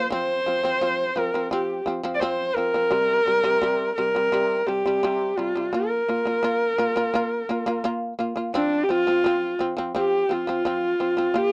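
Vast and galloping, this Mongolian folk excerpt moves at 85 BPM in a straight 4/4. A single bowed horsehead fiddle carries the melody between D4 and D5, its horsehair strings sounding rich and husky with vibrato and portamento, while a fretless shamisen, plucked with a plectrum, plays buzzing, percussive arpeggios from C3 to F4 a little lower in level. Both instruments sit up front in a dry, close 1970s-style studio sound as the harmony moves through F, C and B-flat power chords, shifting into a new section at 8.6 seconds.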